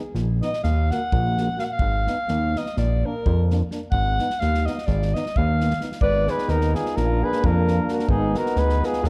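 A smooth, vibrato-laden alto saxophone solo opens this restless, fiery Balkan brass band fragment, carried over two euphoniums in the background, one clear and distant, the other vintage-toned, with a fat, detuned analog synth bass and a punchy, airy acoustic drum kit of kick and snare joining almost at once. Set in a straight 9/8 at 258 BPM counted in eighths, in Ab dorian sharp 4 with Abm, Ebm and Bb chords, the groove speeds up throughout. At 6.0 seconds a mellow, soft-edged flugelhorn steps up front with the melody, all within a dark, lightly reverberant mix.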